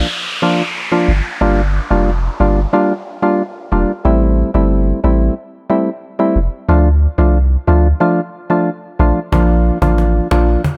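A hollow, percussive organ stab with a dark chorus sheen sits up front through this tough, hypnotic dancehall excerpt, moving at 91 BPM in a straight 4/4 feel in G dorian. An electronic downlifter opens the passage alongside the stabs and ends at 4.1 seconds, while a deep, punchy sub bass with a pitch-drop attack enters at 1.1 seconds and holds its sustained sine tones close to the listener. The chords cycle through Bb, Gm7, Am7 and Dm before returning to Bb. A woody cajon with faint snares appears only at 9.3 seconds, bringing an acoustic, live-room character. The whole mix is set in a digital ambience, and the passage is cut from a longer piece.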